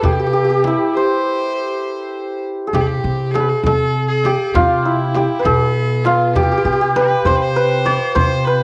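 A ringing, shimmering hammered santur sits up front in this festive, stately Persian modal ensemble excerpt in C dastgah chahargah, moving at 66 BPM in a straight 6/8, with a clear, earthy bowed kamancheh adding a second line with light vibrato and portamento, a woody pizzicato upright bass on steel strings colored by transformer saturation, and a tight tombak and a close, dry frame drum played with hard hands in the background, the whole group set in a moderate echo-chamber reverb with studio ambience, pausing for a break from 0.9 to 2.7 seconds before a new section begins.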